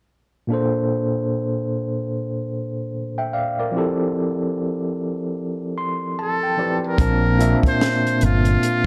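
A swung 16th-note feel at 74 BPM in 4/4 sets up this short, sensual neo-soul R&B excerpt in Bb lydian, moving from Bbmaj9 to Fmaj9 and back. An overdriven tine electric piano carries the accompaniment from 0.5 seconds, its barky, gritty tone pushed through a combo amp with a medium tremolo and plate reverb, and it plays a fill ahead of the second section. At 6.2 seconds a trumpet with a metal mute takes the melody between F4 and C5, breathy and whispered with vibrato, a buzzy, intimate jazz-style solo voice sitting up front in its own plate reverb. At 7.0 seconds a fretless electric bass arrives low and round under a lush chorus, joined by a compact cocktail drum kit of hi-hat, punchy kick and high-tuned snare that stays dry. The whole production is dark and soulful, held in a moderate studio room.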